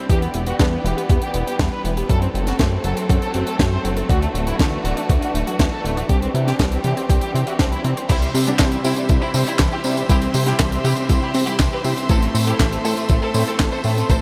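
A straight 4/4 pulse at 120 BPM drives this melodramatic, nostalgic italo disco excerpt, where a thumpy, up-front electronic kick and a tight funk kit with a high-tuned snare, handclaps, hi-hat, tambourine and crash support a glossy, chorused synth bass, a detuned unison pluck carries bright arpeggios with 12-bit sampler grit and tape echo, a studio string section holds sustained chords, a reedy chamber violin section with gut-string tone sings the melody through tape echo and shimmer reverb over chords moving from Em through F#dim, Dadd9 and C to Am, and a twangy, very quiet envelope-filtered electric guitar adds a brief stab at the very start and returns with stabs from 8.1 seconds, all blended into a dreamy mix soaked in huge ambient reverb.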